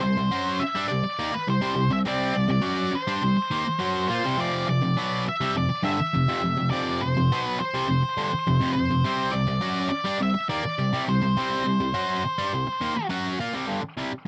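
Rock excerpt at 103 BPM in a straight 4/4 with a sunny, swaggering feel, tuned slightly high to A4 = 441 Hz and moving through C5, F5, C5 and G5. A bright, overdriven, double-tracked electric guitar drives the riff up front. A dark octave-fuzz lead guitar carries the melody alongside it until 13.1 seconds, after which the riff rings on alone to 14.3 seconds. The sound is dry and close, like a 1970s-style studio recording with light reverb.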